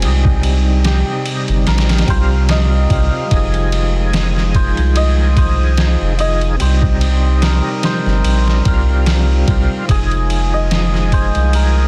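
A round, deep analog bass sits up front in this hypnotic, cinematic trip hop excerpt at 73 BPM in F minor, alongside muffled, thumpy sampler-style drums with kick, snare and ride under overdrive, a gritty tonewheel organ with key click, chorus vibrato, tremolo and slow rotary speaker, a very quiet warbling tape-like pad of nostalgic lo-fi chords, and a shimmering hammered dulcimer melody coated in 12-bit sampler grit and dub echo, all cycling between Cm and Fm7 in a dense, heavily limited modern master.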